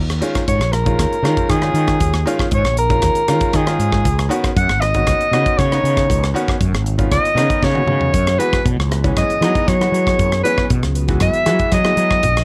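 A straight 4/4 groove at 117 BPM drives this funky, bright electric jazz fusion excerpt, tuned slightly flat to A4 = 438 Hz. A modern studio drum kit sits up front with a punchy kick, a medium-tuned snare, rim clicks, hi-hat and toms, its top rolled off, and a short drum fill arrives at 7.6 seconds. Under it, a growly fretless electric bass anchors the low end while a brilliant grand piano fills in the harmony as the chords move from Eb9sus4 to Db9sus4 and then Gb9sus4. Carrying the melody as a solo the whole way through, a warm soprano saxophone with a vintage jazz character leans on vibrato, soft attacks and scooped notes, its line trailed by an analog delay. At 8.8 seconds a very quiet, dark analog pad slips in with slow-attack detuned chords and chorus, adding a moody depth beneath the otherwise dry, close-sounding mix.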